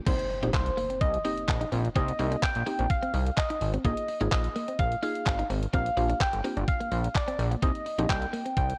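A bittersweet, driving dance-pop excerpt opens at 0.1 s with a thumpy, sampler-style 8-bit drum machine of kick, hi-hat, handclaps and crash, up front beside a glossy, chorused synth bass of pulse and sawtooth tones with a filter sweep and sidechain pumping, while a background electronic impact sounds from 0.2 s. Over them a round, keys-like FM synth lead with phaser and vibrato carries the melody, a woody mallet-like pluck adds pumping accompaniment, a bright, clean electric guitar recorded direct plays a compressed, picked riff in the background, and a hollow group handclap is barely audible from 0.5 s. The harmony moves from Cm7 through Bb7sus4 and Gm7 back to Cm7, wrapped in light digital ambience and the warbling pitch drift of worn cassette tape.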